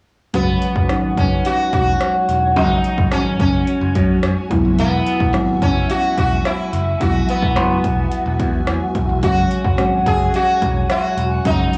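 A buzzing, shimmering sitar sits up front with cassette tape echo, carrying the melody through this glossy, nostalgic 1980s-style pop fragment, over a round, chorused FM electric piano, a swirling phased string machine in the background, a growly picked bass with transformer saturation, and punchy analog pad drums with metallic hi-hats and rim clicks, all moving from F#sus2 to Eadd9 and back at 9.2 seconds inside a small-room, home-cassette sound.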